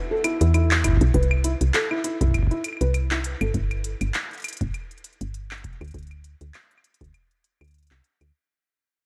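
Melancholic and eerie, this dark, lightly reverberant IDM fragment fades out across its length as a felt-muted upright piano plays intimate, delay-touched arpeggios with audible action noise until 3.5 seconds, an industrial drum kit of claves, handclaps and crisp hats swings over a deep, tape-warm electronic kick, and a woody, round FM bass sits up front with a fast attack and a decaying tone.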